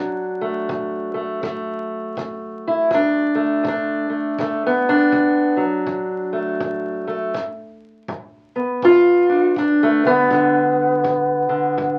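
A relaxed 81 BPM pulse in 4/4 swings its eighth notes gently, giving this short acoustic country blues cut from a longer piece a rollicking yet laid-back feel in D major. A fingerpicked steel-string parlour guitar carries the melody from the first moment, sitting up front with a dark, boxy voice that ranges from D2 to F4. A tight, natural kick drum joins at 0.7 seconds, placed low beneath the guitar with a small-room, brushed character. The harmony rests on D before moving to G at 7.3 seconds. The whole piece sounds like a very old 78 rpm record, with vinyl crackle and a moderate small-room ambience around the players.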